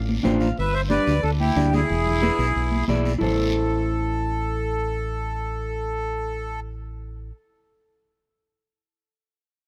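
Fiery and danceable, this short cumbia cut from a longer piece sets an up-front, dark, round fingered electric bass under a reedy, full accordion melody with slow beating, while a dark, slightly broken-up electric guitar accompanies, a clean electric guitar fill sparks the opening, and a raspy guiro joins ringing, high-tuned congas, played with soft hands and sitting in the background, until 3.3 seconds, all captured with close, detailed microphones and light reverb.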